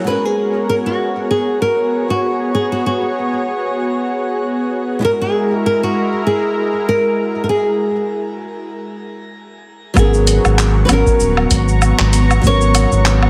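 A relaxed 97 BPM groove in 4/4 with swung sixteenths carries this wistful sunset chillout excerpt in G# minor, opening on a lush, warbling, detuned pad with chorus and a small fingerpicked nylon-string guitar accompaniment, while a full-bodied classical nylon-string melody sits up front from 0.1 s, both guitars trailing digital delay and shimmer reverb over G#m11 and F#9 chords. After a break at 8.7 s, a round, dark analog bass with tube saturation arrives at 10.0 s alongside a gritty, tape-warm sampler-style kit of cabasa, handclaps, hi-hat and woodblock, plus a deep, overdriven electronic kick set in the background. A moderate plate reverb frames the mix, which has the heavily compressed sound of radio.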